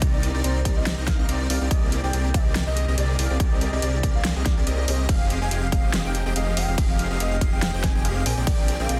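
A half-time future bass groove at 142 BPM with a light 16th-note swing drives this playful, euphoric excerpt in Ab lydian, where a punchy, overdriven electronic kick sits up front beside a thick, detuned saw bass, joined by an overdriven big-room kit with a huge snare, hi-hat and crash. A dense, compressed supersaw riff, a velvety synth melody with chorus and digital delay entering at 0.1 s, and airy dreamy arpeggios all pump under sidechain, while a very quiet, clear symphonic string section holds sustained chords. The chords move from Cm9 to Abmaj9#11/C, Fm9 and Bb13 in a heavily limited, ambient mix.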